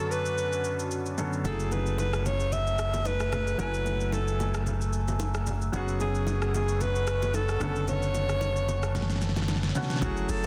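A breathy alto saxophone leads this hypnotic, late-night amapiano excerpt, its mellow, whispered solo line sitting close and up front with vibrato, scooped notes and a trail of delay. Beneath it a clear concert grand piano supplies open accompaniment with deep bass, while a moody sawtooth pad holds sustained chords in the background, thickened by chorus and reverb. The R&B drum kit rides lightly swung sixteenths with a soft kick, fat snare, metallic hats, rim clicks and shaker, carrying vintage-sampler grit and a large-room sound; its kick drops out briefly early on, and a fill closes the passage. At 1.4 seconds a round, punchy fingered electric bass enters along with ringing congas and bongos, the hand drums struck with hard hands and set further back. A dark, percussive log drum bass arrives only at 10.0 seconds, and the whole piece sits in light digital ambience on a dense, heavily limited master.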